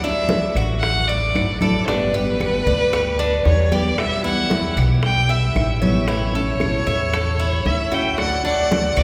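Bathed in a long, cathedral-like reverb, this relaxed and sunny Cuban son and guajira moves at 114 BPM in D major, with a rich, smooth bowed violin melody up front over a thumpy, woody pizzicato upright bass, a full-bodied fingerpicked nylon-string guitar, and bright, metallic picked arpeggios on the double-strung tres, while very quiet ringing congas, tight high-tuned bongos in the background and faint saturated claves keep time, and at 7.7 s a lush, distant violin section with portamento adds a second line.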